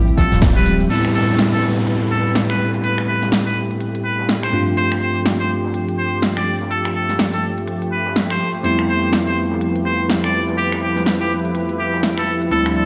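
Swung 16ths drive this moody, late-night deep house excerpt at 124 BPM in A minor, where a punchy electronic kick and hollow organ-like FM bass open the first second alongside faint ringing congas, then an up-front deep house kit with smooth hats and a gritty, very quiet breakbeat sampler-style kit carry the groove as a bell-like tine electric piano stabs through a filter sweep over a smooth, detuned analog pad, a nasal muted trumpet sings a jazz-style solo through digital delay, and an electronic downlifter falls from 0.9 to 4.8 seconds as the chords move from Am9 through G9sus4 to Fmaj9#11, all in a moderate echo-chamber reverb.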